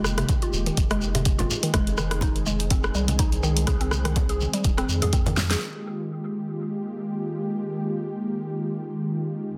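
Earthy and driving, this afro house excerpt moves at 124 BPM in F minor with a light sixteenth-note swing, shifting between Fm11 and Ab/F. A deep electronic kick and a layered deep house kit of hi-hat, rim click and fat snare sit in a small room, while bright, close congas played with soft hands and a grainy, saturated shekere stay in the background. A round analog bass with tube saturation gives a dark, nasal low end with a fast filter pluck, and a woody, warbling FM pluck plays arpeggios through chorus and dub echo, both pumping with the sidechain. A detuned sawtooth pad holds smooth sustained chords under it all, also chorused and pumping. After a drum fill at 5.4 seconds, the groove drops out at 5.6 seconds, leaving the mellow pad alone to ring through a light digital reverb until 9.6 seconds in a dense, heavily limited master.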